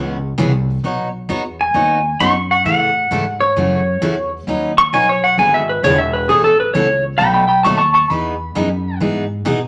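Western swing country with a down-home, swinging feel on swung eighths, built on a full-bodied picked acoustic guitar up front and a woody, thumpy pizzicato upright bass on gut strings. From 1.6 s a clean, compressed pedal steel guitar takes the lead up front, played with fingerpicks and slide and shaped with volume swells, over a progression that moves from C#m7 through Badd9 and B7 to settle on Emaj7. A wet club reverb gives the short cut a lively room sound.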